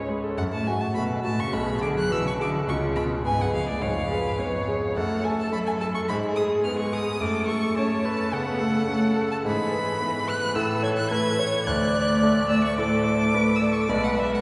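A bright, focused violin carries the melody of this dramatic, restless classical-period movement for piano quartet in F# minor. It enters at 0.4 seconds with bowed vibrato over a quick 107 BPM pulse taken with rubato. Beneath it, the rich cello's intense second line and the smooth, even viola support harmonies moving from F#m through Bm6 and C#7 toward A and D, while a clear concert grand piano, up front and intimate with audible action noise, deep bass and long sustain, accompanies from the first moment. The ensemble is heard from further back in a wet cathedral reverb, in this short excerpt cut from a longer piece.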